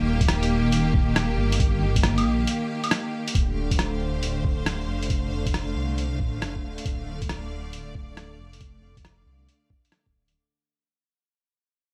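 Clear, smooth symphonic strings sit up front with sustained bowed chords and sidechain pumping in this wistful, rainy, swung future garage excerpt, over a deep, detuned sawtooth bass that rumbles and beats, a muffled, thumpy overdriven kick and a pitched-down lo-fi sampler kit of claves, hi-hat and rim click, all under light reverb and vinyl crackle, with a break at 2.5 seconds before a long fade-out from 3.4 seconds as the harmony moves from Ebadd9 to Dm7.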